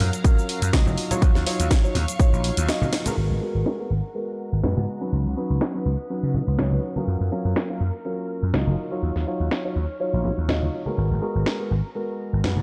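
At 123 BPM in 4/4 with a light swing on the 16ths, this groovy, funky filtered disco house excerpt in G# dorian rides on a punchy electronic kick up front that drops out at 2.3 s. Around it sit a tape-warm house kit with a cracking snare, hi-hat, shaker and crash, plus bright tambourine and congas played with soft hands in the background. An amped electric slap bass sits forward beneath a natural grand piano coloured by phaser and a lush sawtooth string machine with ensemble chorus and 12-bit grit, each of these three pumping against the sidechain and dulled by low-pass filtering, as the chords move through F#maj7, D#m9, G#m9 and C#9sus4; after a short break with a drum fill and band accent at 2.9 s, a filter sweep runs from 3.2 s to the end in a light reverb.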